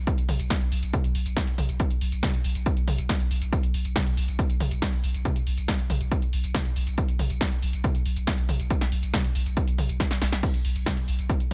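Industrial and relentless, this short excerpt of driving peak-time techno runs at 139 BPM in a straight 4/4, with an up-front, tape-warm electronic kick drum and a punchy analog drum machine of snare, hi-hat, tambourine, toms and crash cymbal, re-recorded in a small room, alongside a deep, thick saturated sub bass around B1 that pumps under sidechain with overdrive and a low-pass filter, all kept dry and dark before a drum fill at 10.0 seconds.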